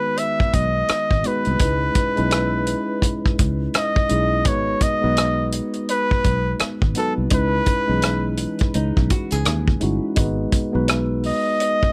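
A clear, close-miked flugelhorn opens this sultry, soulful neo-soul excerpt at 84 BPM in C# minor, singing a jazz-style solo melody with scooped notes over a worn, slightly out-of-tune tine electric piano that moves between G#m7 and C#m9. A dry soul drum kit with a tight kick, hi-hat and rim click sits up front from 0.2 seconds, joined at 0.4 seconds by a dark, round, foam-muted fingered electric bass, all carried on a lightly swung sixteenth-note feel. Near the end, a small, woody nylon-string guitar with old strings adds a soft fingerpicked second line from 8.7 to 10.1 seconds, with light reverb around the whole.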